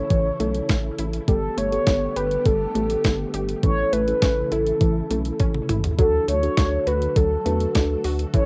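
Wistful yet upbeat, this synth-pop excerpt moves at 102 BPM in 4/4 over A, Gadd9, A and D chords, led up front by a round, horn-like synth lead with vibrato, chorus and tape echo. Muted, felt-like synth keys, a silky string machine with ensemble chorus, and a lush, detuned unison pluck playing arpeggios with tape echo sit behind it. A rubbery, bouncy square bass and a clean 12-bit drum machine with a thumpy kick and overdrive carry the beat, with a drum fill at 5.4 seconds, all captured as a cassette home recording with light reverb that lends a soft, vintage haze.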